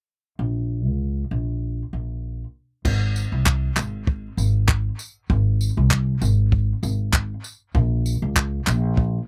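A gently swung sixteenth-note feel in 4/4 carries this short cut from a tender, wistful acoustic pop piece, opening at 0.4 seconds with an upright bass alone, its pizzicato tone woody and dark with steel strings, sitting up front in the low register. At 2.8 seconds a compact cocktail drum kit joins, dry and close, with a punchy kick, shadowy crash cymbal, handclaps and tambourine. The sound is intimate and open-air, carrying little reverb and barely any sense of a room.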